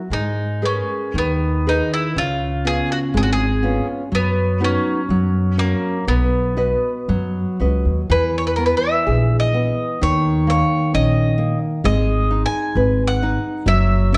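The rhythm moves in a loose, rubato 2/4 at about 58-67 BPM, giving this fado-style ballad a tender, nostalgic sway. A bowl-back mandolin carries the melody with bright, picked double strings, while a classical nylon-string guitar fingerpicks the accompaniment beside it, both sitting up front. An upright bass enters at 0.1 s, played pizzicato on steel strings with a woody tone that anchors the low end. The harmony opens on G#madd9 and drifts through C#7, B/F# and F#, then a second passage from 8.1 s turns to E, D#5 and G#m before the chords fall away at 13.7 s. A moderate recital hall reverb lends the instruments a sense of space, and the overall production is dark and warm, suiting this brief passage cut from a longer piece.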